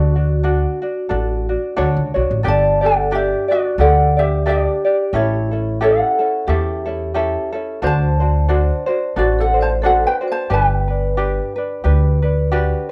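A relaxed 4/4 at 89 BPM with a gentle swing on the eighth notes sets a languid Hawaiian groove in G major, cut from a longer piece. A bright, light ukulele carries the melody with a thumb-plucked touch, while a mellow, fingerpicked tenor ukulele sits up front with its accompaniment. Beneath them, a woody pizzicato upright bass with steel strings anchors the low end, also up front and the loudest of the parts. In the background, a vibraphone struck with medium hard mallets, motor off, adds a ringing, metallic second line, its sound boxy and lent a plate reverb. The ukulele, tenor ukulele and vibraphone all carry a cassette-tape tint, fitting the home-recorded feel, as the harmony moves from Dmaj7 through Gsus2 at 2.4 seconds, A7 and D7 before settling on Gmaj7 at 10.5 seconds.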